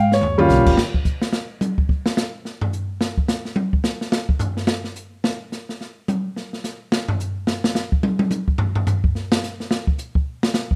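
Lightly reverberant and intimate, this smoky, swinging jazz piano trio excerpt opens on a drum fill as an up-front grand piano with audible action noise and a woody, growly pizzicato upright bass strike an Eb13 chord. Both then stop at 0.8 s, handing the rest to a dark, smooth small-room drum kit with dusky cymbals, a medium-tuned snare and a punchy kick for a solo that runs to 10.8 s.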